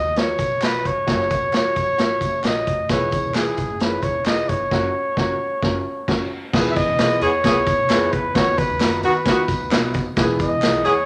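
Uptempo 1960s-style soul at 132 BPM in a straight 4/4, this danceable excerpt from a longer piece moves through chords of B, F#, E and back. A breathy, close-miked trumpet carries the melody up front with vibrato and a soft, whispered attack, sitting over a thumpy pizzicato upright bass with gut strings and a dark, mellow upright piano whose notes hold with long sustain. The vintage drum kit is punchy and gritty, with dark cymbals, a medium-tuned snare and a rolled-off top, while tambourine, tube shaker and group handclaps sit distant in the background. The band hits a shared accent from 4.7 to 6.5 seconds, and at 6.5 seconds a tight, smooth-topped saxophone section enters with a jazz-style second line beneath the trumpet. A moderate large-studio reverb gives the whole band a roomy, vintage glow.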